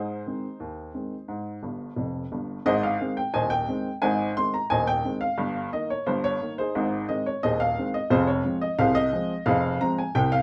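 Ragtime piano in Ab major at 88 BPM in a straight 2/4, playful and lively, cut from a longer piece. A solo upright piano with a woody, short-sustained tone sits up front in a small room with moderate reverb, spanning Eb1 to C6 and adding a fill from 1.6 to 2.7 seconds before the second section begins. The harmony moves from Ab through Eb/G and back to Ab, landing on Fm at 8.1 seconds.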